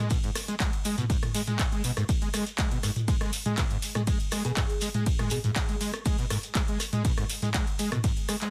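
Acid house at 121 BPM in G# minor, gritty and hypnotic, cut from a longer piece: a squelchy, resonant sawtooth acid bass riff sits up front from 0.0 s, distorted and tube-saturated with a filter sweep, chorus, delay and sidechain pumping. A punchy, tape-warm electronic kick and a booming analog drum machine with metallic hats, handclaps, ride, rim clicks and toms drive alongside it, while a grainy shekere rustles in the background. A round, tine-like FM pluck resembling a thumb piano appears briefly from 4.4 to 5.7 s with chorus and tape echo, all under light reverb and a dense, heavily limited modern master.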